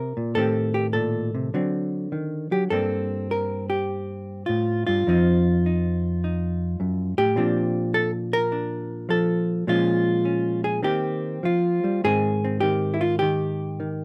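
Swung eighth notes in four, loosened by a rubato feel, give this relaxed, swinging solo jazz excerpt an easy, conversational lilt. A dark, clean electric hollow-body guitar, played with the fingers and placed up front, carries the whole passage alone, moving through chords such as Am7b5, D7, Bbmaj9 and Eb69 before arriving at Abmaj7 at 12.0 seconds. A moderate club reverb gives the guitar a natural sense of room, and the passage is cut from a longer piece.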